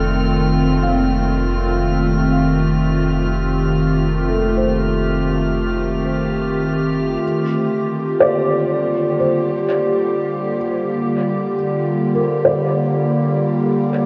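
In a straight, slow 4/4 at 61 BPM, this melancholic, reflective ambient piece in G minor sets a detuned, warbling wavetable pad holding up-front sustained chords with chorus and shimmer reverb against soft, boxy arpeggios from a felt-muted upright piano trailed by dub echo, while a round sub bass and a glassy, drifting harmonics texture float beneath and above until both fall away at 7.2 s, where the harmony moves from F7 to Gm7 and a filter sweep begins reshaping the pad through 14.1 s, all bathed in an echo-heavy plate-reverb space.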